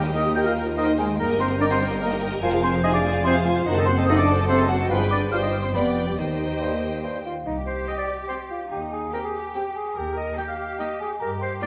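Cinematic, whimsical film cue in C minor, moving at 144 BPM in a straight 3/4 with a quirky, magical air, cut from a longer piece. Bowed string sections carry the frame throughout: a distant violin section holds the melody over a lush second violin line, violas fill in the accompaniment, and close cellos with focused double basses anchor the bass. Around them the woodwinds add color, with an airy flute, a roomy clarinet, a very quiet cor anglais with a soft attack, and a bassoon with light vibrato, while a dark, distant horn section holds sustained chords. The horns, flute, cor anglais and bassoon drop out near 7.0 seconds, and at 7.3 seconds a bell-like celesta with a delicate, ringing tone joins the melody for the closing passage. The harmony winds from Eb through F#dim7 and G7b9 back toward C minor, all set in a wet scoring-stage reverb.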